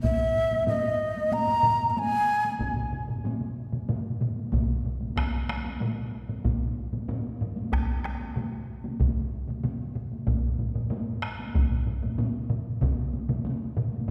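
Driving and powerful, this Japanese traditional taiko ensemble excerpt at 94 BPM in straight 4/4 opens with a breathy, bamboo-toned shakuhachi melody ranging from Eb5 to Bb5, close and up front with vibrato, over layered taiko drums struck with hard and heavy sticks, some distant in a large room, some close and dry. The shakuhachi falls away at 2.5 seconds, one more taiko enters at 2.6 seconds, and everything is carried by a lush concert hall reverb with an RT60 of 2.1 seconds.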